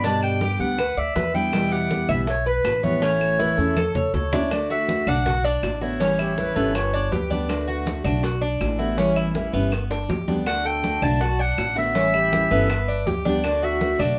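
Heard in a moderate studio room, this danceable excerpt of Cuban son and guajira in D major moves at 161 BPM, with a distant, classical-style clarinet singing the melody up front over a picked steel-string acoustic guitar, a metallic, double-strung Cuban tres spinning arpeggios, a dark, thumpy pizzicato upright bass on gut strings, and an airy, bright baroque flute adding a crisp second line from 3.4 seconds, all driven by background congas, tight high bongos, woody claves and grainy maracas, with drum fills near 3.8 and 9.7 seconds.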